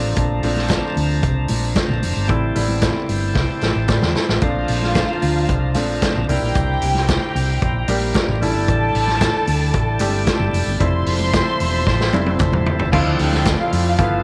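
A clear, intimate grand piano with audible action noise, a percussive tonewheel organ holding sustained chords through a slow rotary speaker, and a round, hollow-body electric bass open this glamorous, danceable disco excerpt together at 113 BPM, joined a moment later by an up-front vintage drum kit with a punchy kick and dark cymbals. Soft-handed congas and a faint, human group handclap sit deep in the mix, while drum fills at 3.4 and 11.9 seconds mark the turns in a progression that moves from Bbmaj9 through C7 and A7sus4 to Fmaj7, settling on Dm9. At 4.4 seconds a lush, woody string section enters with a second line, bowed sul tasto with vibrato and trailed by tape echo, all set in a light studio reverb.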